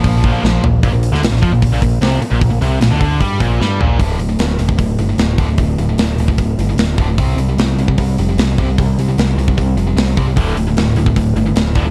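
A growling, round, overdriven bass sits up front in this epic, dark heavy metal excerpt at 151 BPM in D minor, beneath a bright distorted guitar riff that runs throughout, a second overdriven guitar that plays until 4.0 seconds and returns at 10.4 seconds, a very quiet, double-tracked fuzz guitar heard only in the first 0.6 seconds, and a mid-forward acoustic kit with a tight kick and medium-tuned snare in a big room, with drum fills and light reverb in a dark production as the chords move from Bb5 to D5 and C5.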